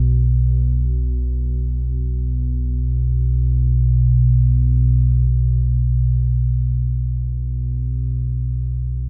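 A deep, rumbling drone plays alone through the whole 9.1 seconds, its triangle and sawtooth tones fading in with a slow attack, sustaining darkly and trailing off in a long release, treated with a phaser and its own reverb and sitting up front. This unsettling, desolate ambient fragment in free time is cut from a longer piece and hangs in a vast, echoing space whose huge reverb lingers for 7.6 seconds. A shift in the material at 5.3 seconds moves it into a second section, while the ominous low register keeps the mood bleak throughout.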